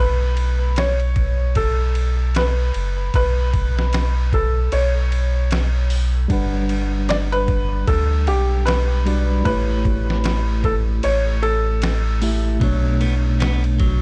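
A felt-muted upright piano carries a soft, intimate melody through a dub echo over a round, mellow sub bass sitting up front, with a gritty, pitched-down sampler-style drum kit of thumpy kick, snare, hi-hat and ride joining almost at once in this brooding, cinematic trip hop fragment. At 6.3 seconds a bell-like tine electric piano adds clean accompaniment through harmonic tremolo and tape echo. At 12.6 seconds the piano drops out as a twangy, slightly broken-up electric guitar picks arpeggios in the background and a very quiet, detuned ambient pad holds dark sustained chords, all within a dusky digital ambience.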